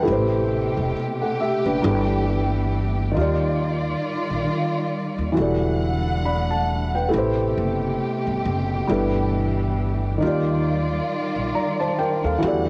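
A felt-muted upright piano anchors this cosy, dreamy lo-fi hip hop piece, its soft, mellow tone close and intimate, with the thick felt and audible action noise coloured by cassette tape. It plays accompaniment from Eb3 to B5 at a relaxed 68 BPM in 4/4, with a gentle 58% swing on the 16ths and tuning set to A4 = 438 Hz. A lush bowed string section holds sustained chords alongside it, expressive with vibrato and portamento and a smooth top, also carrying a cassette tape character. Underneath, a woody pizzicato upright bass with steel strings sits up front, its warm acoustic tone coloured by transformer saturation. The harmony cycles through Am9, G69, Ebmaj9 and Em11 across 12.7 seconds cut from a longer piece, all heard in a light reverb with the homely feel of a cassette recording.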